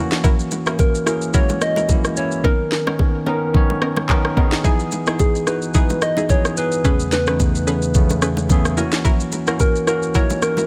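A swung 109 BPM amapiano groove in 4/4, this relaxed, soulful fragment rides on an up-front electronic drum kit with a knocking kick, sharp snare, rim clicks, handclaps and shaker (its hi-hats drop out from 2.4 to 4.6 seconds), while close, dry congas and bongos sit in the background, a bell-like, bright tine electric piano carries the F#7, Bmaj9, Emaj7 and Amaj9/E chords and adds a fill around 8.2 seconds, round sawtooth pluck stabs with chorus and delay punctuate the harmony, and from 0.8 seconds a gentle, keys-like FM synth lead with chorus and delay sings the melody in a dry, intimate mix.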